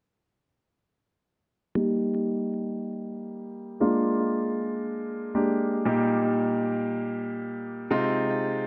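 Pop in Eb major at 117 BPM, this upbeat, carefree fragment features a solo concert grand piano, tuned to A4 = 442 Hz, that plays from 1.8 to 8.7 seconds through the chords Eb, Bb7, Eb/Bb and Ab6/C. The piano sounds clear, smooth and vintage, with a deep bass and an up-front presence, and it runs through a low-pass filter that sweeps over the whole passage, plus a digital delay. A moderate plate reverb surrounds it all.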